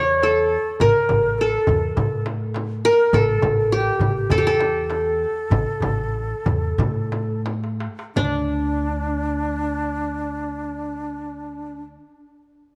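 Hypnotic and soulful, this Arabic maqam ensemble piece is cut from a longer performance and moves in a straight 4/4 that gradually slows from 3.1 seconds. The plectrum-plucked qanun carries the melody up front, its triple strings sounding bright-edged and touched by a slapback echo. Alongside it, an end-blown cane ney adds a breathy, close-miked second line with vibrato and tongued notes. A pizzicato upright bass on steel strings gives a woody, dark foundation. Played with soft hands, a crisp metal-shell darbuka sits in the background beside a small, dry frame drum, and a drum fill ends at 8.2 seconds before both drums stop at 8.5 seconds. The qanun, ney and bass then carry a new passage to the end, with a moderate echo-chamber reverb around the ensemble.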